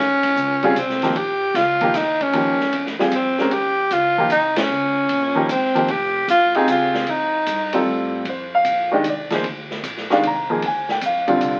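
A close-miked tenor saxophone leads this searching, spiritual modal jazz excerpt in a swinging 3/4, its vibrato-laden, scooped notes and soft attack sitting up front until it drops out at 7.9 seconds. A polished, present grand piano carries the accompaniment beside it, while a woody, thumpy gut-string upright bass plays pizzicato in the background and a vintage kit with dark cymbals, a punchy kick and a rolled-off top keeps the swing, with the whole band hitting an accent at 4.5 seconds. A club reverb and the crackle of a very old 78 rpm record give the sound its aged, smoky character as the harmony settles onto Bb9 at 8.3 seconds.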